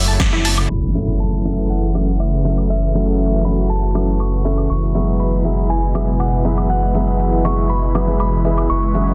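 Emotional and expansive, this progressive house excerpt moves at 120 BPM in a straight 4/4, cut from a longer piece and built on F#m7 before shifting to E/F# at 4.7 seconds. A lush, detuned supersaw pad holds sustained chords under a low-pass filter, while a deep, up-front analog bass anchors F#1, both breathing with sidechain pumping. A crystalline FM bell carries the melody through chorus and digital delay, and a bright analog pluck flickers arpeggios only from 0.1 to 0.5 seconds. The house drum kit enters at 0.2 seconds with a punchy snare, bright hats, shaker and woodblock in a small room ambience, and a background impact sounds from 0.7 to 2.7 seconds as a filter sweep runs across the grand piano's delayed stabs. From 1.6 seconds a calm, drifting glass-harmonics texture hovers in the background, and the whole is finished with light reverb and a dense, heavily limited modern master.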